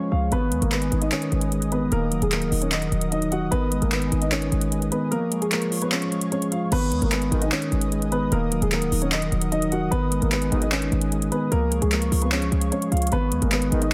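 A punchy, up-front 808-style bass anchors this dark, eerie trap excerpt at 150 BPM in a half-time feel, under a dusky grand piano melody with delay, a mellow tine electric piano, an airy chorused pad, an overdriven drum kit with metallic hats, handclaps and crash entering at 0.3 seconds, and distant brass stabs at 7.3, 10.5 and 13.7 seconds, all cycling through G#m, D#m and C# in a dense, heavily limited mix.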